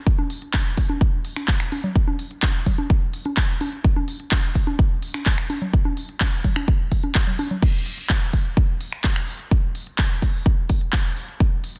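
A punchy, up-front electronic kick drives this euphoric, hopeful house excerpt at 127 BPM in a straight 4/4 drop, joined by a layered drum kit of crisp hi-hats, crash cymbal, finger snaps and handclaps with sidechain pumping on the hats and cymbals, while analog-toned congas pump along until 7.6 seconds, all set in studio reverb within a dense, heavily limited modern master.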